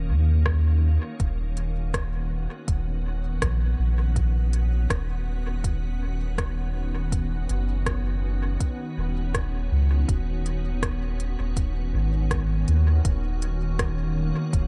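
Over a steady, straight four-four pulse, a soft electronic kick and a crisp electronic kit of hi-hat and rim click settle in just after the start, the kit's strikes trailing off in dub echo. Beneath them, a deep, round sub bass with a fast attack holds sustained low notes up front in the mix, giving this ambient dub fragment its gentle weight. An organ-like pad, pure and full-bodied, blooms slowly into sustained chords from the first moment, its detuned unison voices thickened by ensemble chorus and bathed in their own reverb. The harmony rests on Ebm7 and Badd9/D#, returning to Ebm7 at 13.1 seconds for a brief closing passage before the fragment is cut off. The overall sound is dry and close, with a faint lossy grit, and the mood stays meditative and hazy throughout.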